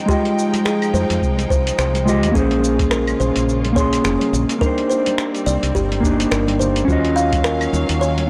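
A dry, gritty hardware recording carries this warm, relaxed sunset chillout excerpt in Bb minor at 106 BPM with a 16th-note swing, where a rich, bowed string section sustains chords through Fm9, Bbm9, Cm9 and Ebm9, a buzzing, woody kalimba plays bright arpeggios through analog delay, an up-front, dark electric guitar accompanies with 12-bit sampler grit and delay, a dusty, tape-warm sampler-style kit of cabasa, claves, finger snaps and hi-hat joins a deep electronic kick and very quiet ringing congas, and a round, punchy fretless bass enters at 0.9 seconds.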